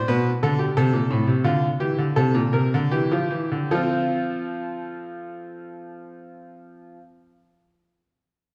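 A bright, brilliant grand piano carries this short solo passage, a baroque-style two-part invention in F major with a lively yet stately character. Its tone is smooth with a vintage edge, sitting up front in the mix while spanning A2 to B4. The tempo moves between 73 and 91 BPM in a straight 4/4, with the opening section slowing down before a new section arrives at 3.7 seconds. The harmony passes from G to F and then to C7, settling back on F as that second section begins. A wet recital hall reverb, heard from further back in the room, lends the piano a spacious halo, and the instrument is tuned to A4 = 436 Hz. The 7-second clip is cut from a longer piece.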